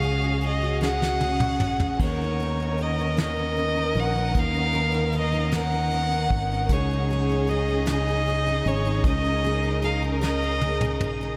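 A slow, swaying 6/8 pulse at 51 BPM in dotted quarters sets the tender feel of this short pop ballad, cut from a longer piece. A soft brush drum kit with a fat snare and punchy kick marks the time, adding fills at 0.8 and again at 10.2 seconds, while a round, dark fingered electric bass sits up front beneath it. A double-tracked steel-string acoustic guitar picks out bright, fresh-stringed accompaniment, with a touch of finger squeak. A focused, slightly boxy solo violin carries the melody up front with vibrato and a delay trailing its bowed lines. Behind it a lush studio string section holds distant, expressive sustained chords with portamento, moving from F#sus2 to Bmaj7 and then C#sus2. A huge ambient reverb soaks the mix in a dreamy haze.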